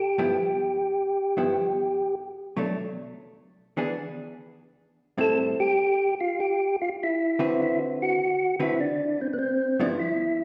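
A reverberant hall, with a long 1.6-second decay, surrounds this short, swinging, soulful jazz cut at 100 BPM in 4/4 with a triplet-feel swing. A mellow, round tonewheel organ carries the melody through a slow rotary speaker, its third-harmonic percussion giving each note a clean attack. Beneath it, a dark, compressed hollow-body electric guitar sits lower in the mix and comps picked chords from G13 and Bm through a brief chordless passage at 4.0 seconds to Am7 and D13.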